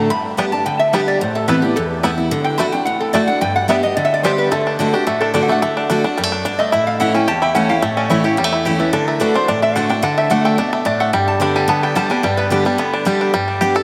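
Soaked in a huge, dreamy ambient reverb, this joyful, virtuosic bluegrass passage, cut from a longer piece, opens with a full-bodied picked steel-string acoustic guitar carrying the accompaniment up front alongside a lap resonator guitar. Played with fingerpicks and a steel bar, the resonator guitar takes a metallic, nasal slide solo treated with delay as the second line until 12.5 seconds. From 0.4 seconds, a twangy, percussive banjo played with fingerpicks sits up front with the bright melody.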